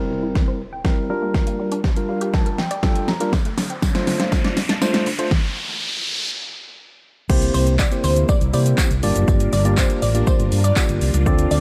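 Confident and energetic, this dance-pop clip at 121 BPM opens with a build-up over a riser and impact, a mellow tine electric piano with sidechain pumping and a brief fill, and a squelchy background blip pluck running arpeggios through phaser, delay and a filter sweep. Overdriven pop drums with a punchy kick, a fat snare and metallic hats play a fill, joined by a very quiet jingly tambourine, before a stop at 5.3 seconds. The drop lands at 7.3 seconds, bringing a round, dark fingered bass up front and vintage sawtooth string-machine cellos in the background, followed moments later by a glassy, crystalline wavetable pluck melody over C7 and Gm7 chords, all in a light reverb.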